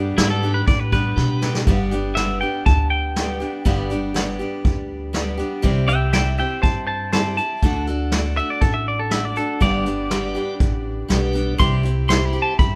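Lightly reverberant, this nostalgic, sunny honky-tonk country excerpt opens with a very quiet, nasal slide lap resonator guitar that stops at 1.1 s, followed by a brushed fill on a punchy, rolled-off vintage kit that leads into a twangy, compressed clean electric guitar solo from 1.7 s, carried over a woody, thumpy upright bass, a bright picked steel-string acoustic guitar with audible finger squeak, and a piping tonewheel organ with key click and slow rotary speaker that sits in the background and returns at 10.1 s.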